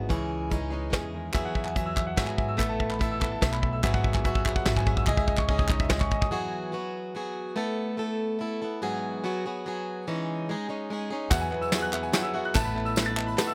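Hopeful and uplifting, this indie folk excerpt moves at 145 BPM in a straight 3/4 in E major, with an arrangement that builds as it goes. A boxy, picked, swing-style acoustic guitar sits up front through the whole passage, while a bright, fingerpicked steel-string guitar rings in the background until 2.6 seconds. Soft brushes on a kit with a tight kick and a medium-tuned snare, a woody, thumpy pizzicato upright bass, crisp group handclaps and a brilliant, polished upright piano playing high arpeggios carry the opening build-up and its drum fill, then drop away at 6.3 seconds, leaving the guitar alone. They all return at 11.3 seconds, joined by a jingly tambourine and a dark, mellow baby grand piano with long sustain that adds a closing fill. The harmony cycles through C#madd9, Eadd9, Asus2 and Eadd9/G#, and the close, dry sound has little reverb.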